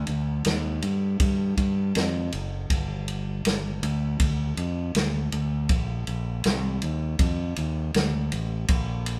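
A growling, overdriven fingered electric bass opens this brief, brooding cut from a longer blues rock and southern rock piece in G minor, its bright, amped tone sitting up front at a heavy 80 BPM in straight 4/4. A vintage drum kit enters at 0.1 seconds with a tight kick, medium-tuned snare and dark ride cymbal, its rolled-off top giving a natural acoustic weight close to the listener. The two parts sound like a band playing live together in one studio room, with moderate reverb adding space.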